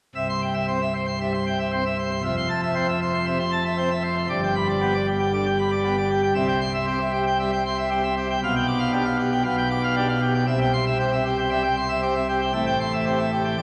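A cavernous church reverb surrounds this short passage, its long tail of 3.6 seconds hanging in the air behind every chord, while the organ itself sits up front and close. It is a classical organ toccata in C major at 116 BPM in a straight 4/4, cut from a longer piece and carrying a jubilant, brilliant mood. A single pipe organ plays alone on a full plenum registration, its mixtures adding a glittering, baroque-voiced edge to the sound. The part spans from a deep C1 up to D6, filling the room from the floor to the vaults. The harmony moves from C through Fmaj7 and G back to C, then through G7/B to C once more, closing on Am7. The organ enters at 0.1 seconds and sounds through to 13.6 seconds, where the excerpt ends.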